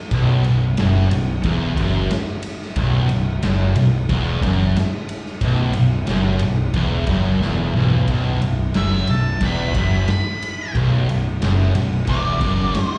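Stoner and doom metal in B minor at 90 BPM, this hypnotic, sludgy excerpt is heard as if from a live gig through the venue's PA, with a light recital-hall reverb and a dulled top end. A bright, double-tracked overdriven guitar with slapback echo carries the low riff on a B5 power chord, backed by two thick fuzz guitars sitting in the background, one dark and one warm, the first also treated with slapback echo. Beneath them a fuzz-laden fingered bass, recorded direct and amped, anchors the low end an octave below the guitars. The raw garage drum kit sounds gritty and saturated, with a punchy kick, medium-tuned snare, ride cymbal and toms, closing the opening stretch with a fill from 7.4 to 8.1 seconds. At 8.8 seconds a dark octave-fuzz lead guitar enters high above the riff for a solo, its tone smeared by slapback and tape echo.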